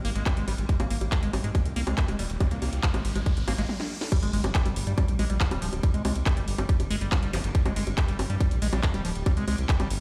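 An alien, hypnotic stretch of psychedelic trance in a straight 4/4, cut from a longer piece. A round, deep analog bass sits up front with a dark, sustained sawtooth-and-sine tone touched by ring modulation. A squelchy, resonant acid bass riff with filter sweeps runs through phaser and delay, and both it and the detuned wavetable pad pump against the sidechain. The bright pad morphs in the background, thickened by ensemble chorus, its own reverb and phaser. A tight, tape-warm electronic kick drives from 0.3 seconds, while a techno kit adds a cracking snare, metallic hats, handclaps, bongos, toms and crash. A background riser from 2.3 seconds leads into a short break and drum fill, and the drop lands at 4.1 seconds with an impact, all heard as if played on a big sound system in a bare stone room.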